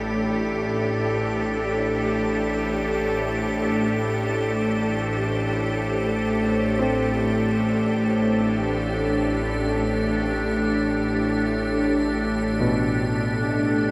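A crystalline, chorused glass pad fades in across the full 13.9 seconds, while a tense, string-like drone with vibrato and a clear, intense symphonic cello section holding sustained chords sit up front in this dark, cavernous ambient drone excerpt. Behind them, a smooth vintage baby grand piano plays arpeggios through a diffuse ambient delay. The room is wet, with a huge reverb that lingers for 8.4 seconds.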